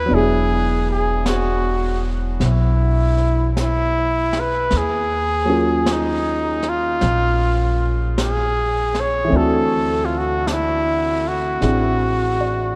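A slow 4/4 swing at 52 BPM carries this tender, romantic jazz ballad, drifting through E9, Ebm11 and D9 chords in a dreamy mix steeped in lush hall reverb. Up front, a clear solo trumpet with light vibrato and analog delay sings the melody, while an intimate concert grand piano with deep bass and audible action noise accompanies. A woody pizzicato upright bass anchors the low end, and a dark, smooth brushed drum kit with a high-tuned snare and hi-hat sits quietly behind, all within this short excerpt of a longer piece.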